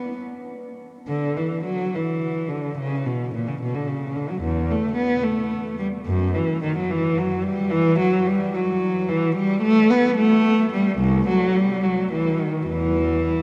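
Classical baroque-style suite movement for unaccompanied cello, solemn and flowing in 6/8 with free rubato, where a single bowed cello with a woody, vibrato-rich tone sits up front while a vast cathedral's long, echoing reverb surrounds it throughout this short passage cut from a longer piece.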